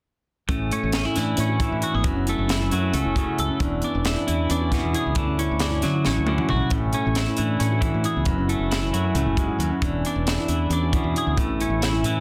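Playful and intricate, this math rock and midwest emo fragment moves at 270 BPM in eighths through a straight 7/8 in A major, tuned slightly low to A4 = 437 Hz. From 0.5 s, a clean, picked twelve-string electric guitar sits up front with a compressed, warm tone, carrying the accompaniment over a dark, round fingered electric bass. A stainless-steel handpan, played with the fingertips, adds ringing, meditative arpeggios bathed in plate reverb, giving it a boxy small-room character. The crisp fusion drum kit sounds airy and polished, with a high-tuned snare, punchy kick, hi-hat and toms, and a drum fill breaks through from 6.1 to 6.7 s. The harmony cycles through Amaj7, F#m7, E7 and Dmaj7 before settling on A, all within moderate studio reverb and a dense, heavily limited modern master.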